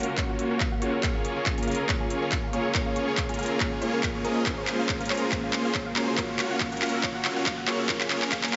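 Bright and euphoric, this future bass build-up at 140 BPM in Db major moves in a swung half-time feel, with huge detuned supersaw chords and a crisp-hatted dubstep kit with handclaps up front alongside a punchy tape-warm electronic kick, while a bell-like tine electric piano, soft round pluck arpeggios under a filter sweep, and a shimmering ethereal pad all pump behind, as a drum fill runs throughout and a very quiet riser enters at 2.4 s over Gbmaj7, Db6 and Bbm9 chords in a lush hall reverb.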